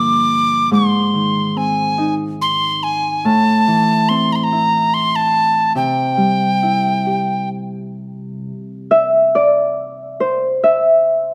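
A breathy, bright metal tin whistle with vibrato and a tongued chiff sings a mournful, longing Celtic slow air in a rubato 3/4 over a ringing, thumb-plucked Celtic harp, both up front in a moderate recital-hall reverb, until the whistle falls away at 7.5 seconds and the harp carries on alone from 8.4 seconds to the close of this fragment of a longer piece at 11.3 seconds.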